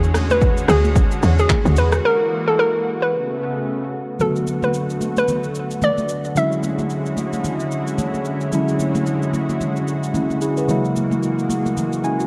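A woody, punchy log drum bass sounds from the very start of this hypnotic, deep amapiano excerpt at 111 BPM in B dorian, playing only until 2.0 s as the drop gives way to a break, while a hollow, bouncy square pluck carries the melody through chorus and delay until 8.2 s over a lush, airy unison pad that pumps against the sidechain. A deep house kit with a punchy kick and dark hats, handclaps, rim click and shaker runs throughout, bright high-tuned congas with hard hands sit in the background, and a mellow, slightly out-of-tune tine electric piano enters at 4.2 s and closes with a short fill. The whole track carries the worn, warbling drift of old cassette tape with lossy artefacts and light reverb, moving through chords such as E13, Bm7 and Dmaj9#11.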